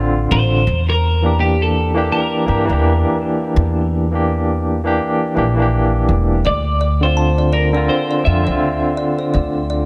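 A barky tine electric piano with tremolo and tape echo opens alongside a woody pizzicato upright bass, both up front, setting a dark, hypnotic trip hop groove with a swung feel in light reverb; from 0.3 seconds a twangy, compressed twelve-string electric guitar carries the melody through dub echo and vintage 12-bit sampler grit, and from 6.4 seconds a delicate, slightly out-of-tune music box adds tinkling arpeggios with the same grit and echo in this short passage cut from a longer piece.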